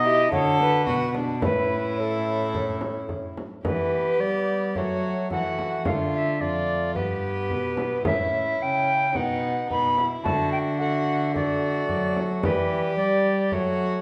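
A wet recital-hall reverb surrounds this courtly, festive consort dance in the Renaissance style, cut from a longer piece and played with a straight, even feel in common time. Up front, a pure, wooden alto recorder carries the melody with a soft attack, gentle vibrato and rolled-off highs, playing expressively above the ensemble. Beneath it, a single bowed violin with a gut-string, period-style tone and light vibrato adds a second line. A mellow solo bassoon sits distant and roomy in the accompaniment, while a close, rich and reedy cello anchors the bass. A deep, large frame drum joins at 0.3 seconds and keeps time until 13.8 seconds, and a short opening phrase gives way at 3.7 seconds to a longer passage whose chords shift steadily beneath the recorder.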